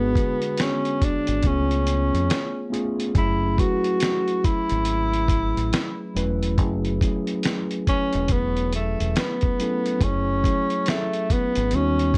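Lo-fi hip hop at 70 BPM in F# minor, with a hazy, melancholic mood and a swung 16th-note feel, cut from a longer piece. A close-miked tenor saxophone carries the melody up front with light vibrato and a soft attack, softened by a low-pass filter, over a mellow tine electric piano softened by cassette tape, a low-pass filter and plate reverb, and a deep, round dub bass. A gritty, compressed sampler-style drum kit with a thumpy kick and fat snare joins at 0.2 seconds, while the chords move from G#m7b5 through C#7b13 to F#m9 in a moderate studio reverb.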